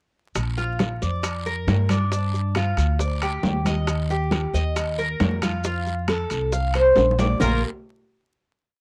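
The metallic Cuban tres sits up front, its double strings, some doubled at the octave, picking out an arpeggiated guajeo in a relaxed, danceable Cuban son and guajira at 136 BPM in Bb major. Beside it, the woody pizzicato upright bass plays a tumbao that anticipates the chords, moving through Bb, G5, Eb and F before settling on a closing Bb5. Tight, high-tuned bongos keep steady eighths with a hand bell, while ringing congas sit further back with slaps and open strokes. Metal-shell timbales add a shell pattern and bell, the raspy guiro and grainy maracas fill in quietly beneath, and a drum fill at 7.0 seconds leads into the final chord at 7.4 seconds. The whole piece has the dry, close feel of a 1970s studio recording, with little reverb and a layer of vinyl crackle.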